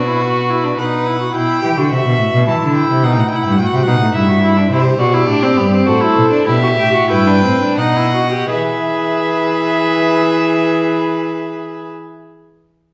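Classical baroque-style fugue for string quartet in E minor and 3/4, contemplative yet driving at 80-108 BPM, in which a nasal, airy-bowed first violin carries the melody over a second violin with light vibrato that falls silent from 1.4 to 4.7 seconds, a rich viola accompaniment and a reedy cello bass, all on period-style gut strings heard from further back in a wet recital hall, with the tempo slowing from 3.9 to 8.5 seconds before the cadence on E.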